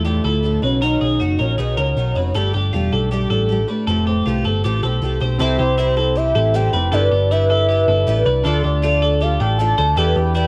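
Indie pop with a nostalgic, youthful mood, carried by a soft octave-layered synth lead whose round, sustained tone shimmers with chorus, tremolo and vibrato above a woody, boxy twelve-string acoustic guitar and a bright, twangy twelve-string electric guitar spinning arpeggios through spring reverb. A dark, punchy hollow-body bass sits up front, and at 5.4 seconds glossy, detuned retro synth keys slip in quietly behind the guitars. The home cassette recording gives the dry mix a lo-fi intimacy, and the excerpt is cut from a longer piece.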